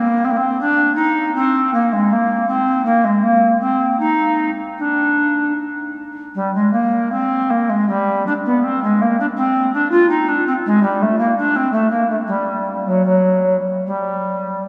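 Grave and flowing, this fragment of a baroque-style classical fantasia gives a lone bass recorder the whole stage, its airy, woody straight tone and tongued chiff carrying an expressive rubato line in triple time that blooms into a long, wet cathedral reverb over a trace of small-room ambience.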